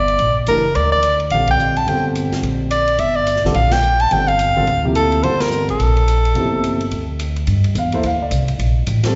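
Intense and hypnotic, this short cut from a longer modal jazz piece in G dorian swings at 214 BPM, with a clear, close-miked soprano saxophone carrying the melody with light vibrato, subtone and scooped notes through a slapback echo until 7.2 seconds, over a woody, thumpy pizzicato upright bass, a deep-voiced concert grand piano comping with its own slapback echo, and a subdued acoustic drum kit of dark cymbals, medium-tuned snare and boomy kick, the band striking accents at 1.5 and 3.7 seconds, all heard as a live gig through the venue's PA with recital hall reverb and a dulled top end.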